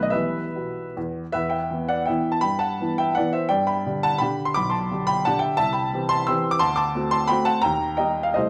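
Dotted rhythms drive this rustic, graceful romantic dance in 3/4, its rubato tempo flexing between 136 and 188 BPM in E minor. A warm, up-front baby grand piano plays alone across an 8.5-second fragment of a longer piece, ranging from deep bass to bright treble, as the harmony moves from E minor through G, C and D7 before landing on an E-flat chord at 7.6 seconds. A wet recital hall reverb with a 1.3-second decay surrounds the piano.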